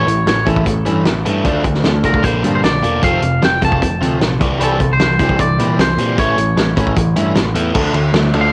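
A twangy, clean electric guitar carries the melody from the start of this restless, moody indie rock excerpt in D minor at 152 BPM, over a biting overdriven guitar riff with spring reverb and a bright, compressed fuzz guitar riff colored by analog chorus and delay. A growling, punchy picked bass with overdrive sits underneath, and a loose, gritty drum kit with a fat snare, punchy kick and rolled-off top comes in at 0.1 seconds, sitting up front. The chords move through A, Dm, Bb, F and Cadd9, back to A, and then return to Dm at 7.8 seconds, all in a dry, saturated home cassette recording.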